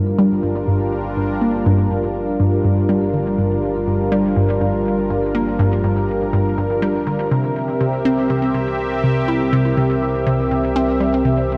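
Ambient, sequencer-driven space music in G dorian, this excerpt moves at 122 BPM in a straight 4/4 with a mysterious, cosmic mood. Up front, a hollow, bouncy square-wave pluck with detuned chorus and tape echo plays a riff with a fast attack, short decay and a moving notch filter, while a sweeping resonant pad built from detuned sawtooth and sine layers with a sub octave holds full-bodied, evolving chords that open with a slow attack and filter swell. Far beneath them, a concert harp rings out very quiet fingerpicked arpeggios, and a fat, saturated analog bass of detuned sawtooth sustains low notes in the background, fading in across the whole passage. The harmony shifts from Gm7 to C7 at 7.3 seconds. A wet, lush hall reverb bathes the mix, giving the production a dark, warm depth.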